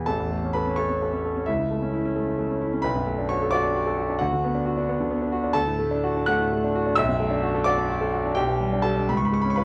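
A clear concert grand piano plays alone from the start in this brilliant, heroic fragment of a virtuoso classical piano study in A major, moving at 87 BPM in a rubato 6/8 across a range from A1 to F#6, its deep bass and long sustain up front in light reverb and coloured by the warbly pitch drift of worn cassette tape, as the harmony travels from A through Bm7 and D before turning to C#7 at 9.1 seconds.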